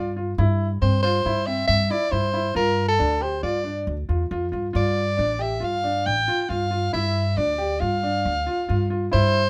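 A breathy soprano saxophone, a concert grand piano and an upright bass all begin together at the start of this pensive, hypnotic piece of contemporary chamber music, set in an uneven 5/4 metre at 137 BPM with a straight feel. The saxophone carries the melody up front in a bright, jazz-inflected solo voice with vibrato. Beneath it, the piano plays arpeggios in a warm, intimate, natural tone, with its action noise audible. The pizzicato upright bass sits up front too, woody and dark with steel strings. The harmony moves through C/G, G5 and Dm before returning to G5, and light reverb surrounds the ensemble in this brief cut from a longer piece, which runs about 9.5 seconds.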